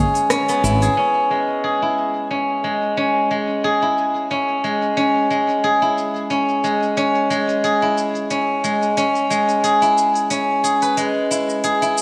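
A bright, silvery steel-string zither played with fingerpicks rings up front with arpeggios in C# minor, its tone softened by a low-pass filter and trailed by digital delay, setting a mystical, warm mood in this organic downtempo excerpt at 90 BPM with a light 16th-note swing. Produced electronic afro-pop drums enter at 0.2 s with metallic, tape-warm hi-hat, rim click and shaker, each filtered low and set back in the mix, and a filter sweep runs across them from 1.0 s. A dark, growly, round fretless electric bass sounds a single up-front G#1 between 0.6 and 0.9 s, while a lush hall reverb with a 2.8-second tail surrounds the piece.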